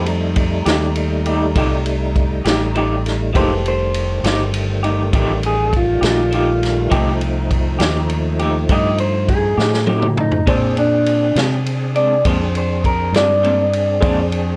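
A slightly broken-up, picked electric guitar through a small old amp carries the melody from 3.7 s in this gritty, laid-back slow blues in 12/8, cut from a longer piece. A second lo-fi guitar adds tremolo-soaked accompaniment, while a reedy tonewheel organ holds sustained chords with key click and a slow rotary speaker, and a clear, short-sustained baby grand sits in the background. An up-front fingered bass with transformer saturation and a vintage kit with a punchy kick and a rolled-off top anchor the groove, with a drum fill leading into the move from F9 to Bb9 at 10.5 s, all dry and wrapped in worn, warbling cassette tape.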